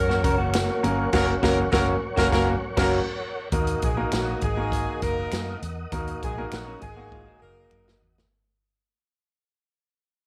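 A punchy, up-front big-band drum kit swings through this joyful, danceable excerpt of 1960s-style soul, joined by a round, foam-muted electric bass, a long-sustaining baby grand piano, a tight horn section with light vibrato, and a slow-rotary tonewheel organ with key click that holds smooth chords in the background. A slightly broken-up, lo-fi picked guitar riff plays until 3.0 seconds and returns at 6.7 seconds, while a soft finger snap sits behind the band. After a band accent, the music fades out from 3.5 seconds, closing on a drum fill, all in a small room with light reverb and a faint mains hum.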